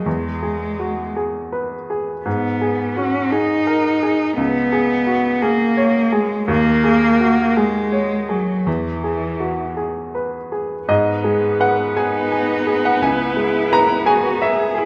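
A moderate reverb, like that of a scoring stage, gives this neoclassical fragment of piano and strings a sense of space while keeping the piano up front. The mood is reflective and melancholic, moving in 6/8 with uneven, rubato beats that let the phrases breathe. A clear, woody upright piano with a vintage character and short sustain carries the accompaniment from C#2 up to A#5, while a single bowed cello plays a second line, its tone warm and expressive with vibrato and portamento, set close in the mix yet touched by a distant quality. At 10.9 seconds, as the opening phrase returns, a lone viola enters, rich and bowed with its own vibrato and sliding portamento, sounding from further back at a lower level. The harmony drifts from E through G#madd9, C#5 and D#7sus4, back to E, before settling on G#m and C#m7, and the passage ends at 14.9 seconds, cut from a longer piece.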